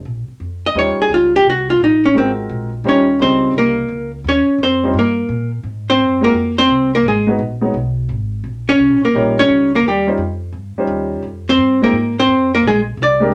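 A woody, pizzicato upright bass opens at 0.1 seconds, setting up a relaxed, swinging small-group jazz groove rooted in swing and bop. At 0.7 seconds a dark, clean hollow-body archtop guitar enters, picked and placed up front as it takes the solo for the rest of this passage cut from a longer piece. A concert grand piano joins at 0.8 seconds with intimate accompaniment, its short sustain, deep bass and audible action noise giving it a natural, close presence. The harmony moves between Eb13 and Ab13, passes through Abm7, and closes on Fm and Bb13. A studio reverb with a short decay surrounds the trio, keeping the sound lively while the guitar stays clearly in focus.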